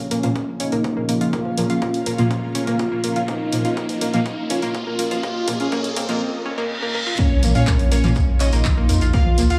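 A soft supersaw melody and a warbling analog pad open this hypnotic, cinematic melodic techno excerpt in Bb minor at 123 BPM, both filter-swept through a build-up with a riser, an analog pluck arpeggio, brassy synth stabs, a dry overdriven drum machine with congas, handclaps and hi-hat, a punchy layered kick and a cloudy granular pad, before a reverse cymbal leads into the drop at 7.2 seconds, where an impact lands, a crystalline wavetable pluck and a grainy shekere join, and a round, deep analog bass arrives at 7.4 seconds, the synths pumping under sidechain in light studio reverb.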